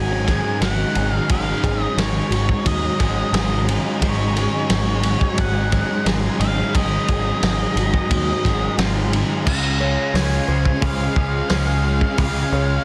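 A straight 4/4 pulse at 88 BPM comes from a loose, up-front indie drum kit with a fat snare, punchy clipped kick and dark cymbals, entering at 0.3 s and stopping at 12.3 s beneath a growling, overdriven bass in this blissful, hazy shoegaze and dream pop piece in Db major. A dark octave-fuzz lead guitar sings a melody through analog delay over a dense bed of riffing guitars: a compressed clean electric with reverse reverb, a bright double-tracked overdriven part and a very quiet thick fuzz guitar. A woody, shimmering twelve-string acoustic plays fingerpicked arpeggios in lush chorus and delay, and a mellow, very quiet organ-string ensemble holds chords as the harmony moves from Ab7sus4 to Dbmaj7 at 9.5 s in a small room under a dense, heavily limited master.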